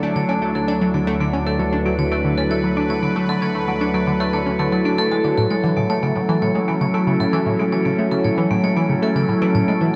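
A swirling, phased analog pad sits up front, holding slow-blooming sustained chords that move from Dadd9 to A6 at 5.4 s in this cosmic, expansive slice of ambient, sequencer-driven space music in straight 4/4. Beside it, a metallic vibraphone struck with hard mallets rings out arpeggios through tape echo, its fast motor vibrato lending a vintage tint, while a tight, nasal sequenced synth with a detuned sawtooth edge and filter pluck drives a riff underneath. A mellow, warbling analog drone holds a low D2 until 5.4 s, and a wet cathedral reverb soaks the dreamy mix.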